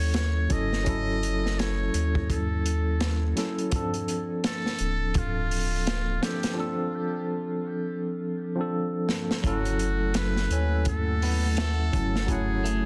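A muted trumpet with dub echo sings a buzzy, melancholic melody over worn, slightly out-of-tune tremolo electric piano, a round, deep analog bass and a crunchy, saturated breakbeat kit in this hypnotic 84 BPM trip hop excerpt, swung on the sixteenths, moving from F#m7 to Dm7 before a drum fill leads at 9.4 seconds to twangy, gritty guitar arpeggios and, from 9.9 seconds, a moody, detuned chorused pad in the background, all set in a small room within a dense, heavily limited master.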